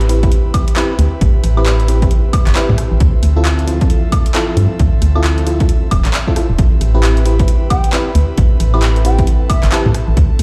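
UK garage in a two-step style at 134 BPM, this moody, late-night excerpt in A minor swings its 16ths over Am7, Dm7 and back to Am7, with a punchy, overdriven electronic kick and a hollow, dark, organ-like FM bass sitting up front, and an analog drum machine adding overdriven handclaps, hi-hat, rim click and woodblock. A glassy, bell-like FM electric piano stabs with chorus and delay, while a breathy, detuned pad holds soft sustained chords underneath with chorus and sidechain pumping. At 7.7 s a mellow, distant baroque flute with vibrato enters in the background with delay, and the whole piece sounds as if played on a big sound system in a bare room with large studio reverb.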